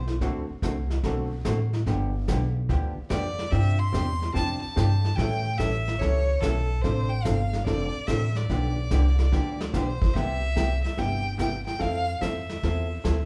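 This playful, cheerful western swing excerpt opens on a woody, thumpy pizzicato upright bass that sits up front, along with a brief touch of fiddle, and a vintage brush kit and a hollow-body jazz guitar join almost at once at a swung 145 BPM in 4/4. The drums have a punchy kick, a medium-tuned snare worked with brushes, and a hi-hat, all carrying a rolled-off top and a small-room character. The clean, picked guitar supplies dark, compressed accompaniment through a progression that moves from D7 and G7 through A7 and Dm7. At 3.1 seconds a bowed fiddle takes up the melody with a clear, focused tone and light vibrato, reaching as high as C6. Near 10.1 seconds the harmony settles onto Cmaj7 and Fmaj7 for a new section, and the whole band plays live together in a large studio with moderate reverb.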